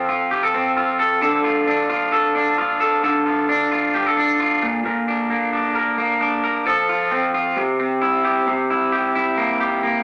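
An electric guitar played through a small old amp carries this short indie pop excerpt entirely on its own, its picked tone bright, twangy and slightly broken-up, with a compressed, lo-fi edge that sits up front in the mix. The mood is bittersweet and wistful, moving at 132 BPM in a straight 4/4. The guitar ranges from Bb2 to Bb4 as it works through a progression of F, Dm, Bb, F and C before landing on C7 near the close. A moderate club reverb gives the part a modest sense of room around it. After the opening passage, a brief new section begins at 8.5 seconds on that C7, and the clip is cut off at 10.0 seconds, as it is lifted from a longer piece.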